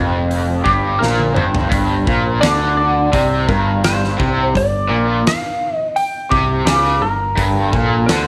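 A straight 4/4 groove at 85 BPM anchors this gritty, heavy blues rock and southern rock cut in G minor, held on a G minor chord. A bright, double-tracked garage guitar riffs up front with overdrive and harmonic tremolo, underpinned by a growling, overdriven picked bass, while a lightly broken-up, compressed lead guitar sings a wah-tinged melody above. The huge arena drum kit joins at 0.3 s with a fat snare, punchy kick, hi-hat and toms, throwing in a fill at 1.0 s, its polished, airy sound set in a big room.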